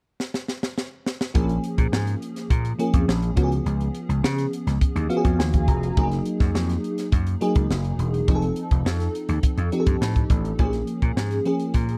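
A crisp fusion drum kit with a high-tuned snare and punchy kick opens this upbeat, glossy slice of polished 1980s jazz-funk pop, its fill at 0.2 seconds leading into a straight 104 BPM groove in 4/4, tuned a touch below standard pitch. A lush, dreamy FM electric piano with a soft, detuned pad layer and ensemble chorus enters at 1.3 seconds, and an amped vintage slap bass joins at 1.4 seconds as the music moves through A#m7, C#7, F#69 and F7 changes, the piano adding its own fill at 4.8 seconds. The sound is dry and close in a small room, with all three parts up front in this short cut from a longer piece.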